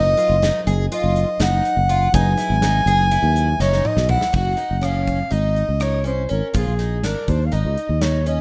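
Bright and intricate, this short cut from a longer progressive instrumental moves in a straight 9/8, led by an up-front soprano saxophone with light vibrato and a classical touch, its line trailed by delay. A shimmering, octave-doubled twelve-string acoustic guitar picks delayed arpeggios with audible finger squeak, a growly fretless bass with lush chorus sits close in the mix, and a worn, slightly out-of-tune, lightly overdriven electric piano plays in the background until 4.3 seconds, when a drum fill ushers in the second section. The gated 80s drum kit, airy and polished with a tight kick, enters at 0.2 seconds alongside a grainy, barely audible tube shaker that drops out at 4.0 seconds, all within a rough, small-room home demo sound.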